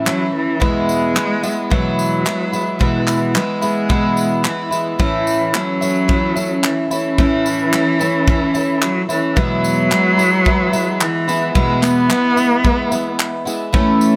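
A shimmering, octave-doubled twelve-string acoustic guitar and a rich, bowed solo cello with vibrato open this heartfelt, carefree acoustic pop excerpt in A major, moving at 110 BPM in a straight 4/4 between A and E chords. An airy studio drum kit with a punchy kick, handclaps and tambourine joins at 0.1 seconds, all three parts sitting up front in light reverb, while the cello carries a smooth, focused second line alongside the picked guitar accompaniment. A new section begins at 5.0 seconds and runs to the cut at 14.2 seconds.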